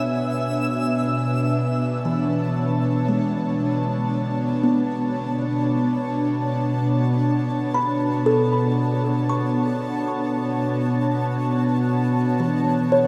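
Bathed in a vast, echoing cathedral reverb, this serene, melancholic ambient excerpt places a glassy, ethereal FM pad up front holding sustained chords over soft, woody kalimba arpeggios with tape echo in the background, while a twinkling granular texture sparkles only through the first 1.1 seconds and a detuned, chorused analog drone joins at 5.7 seconds.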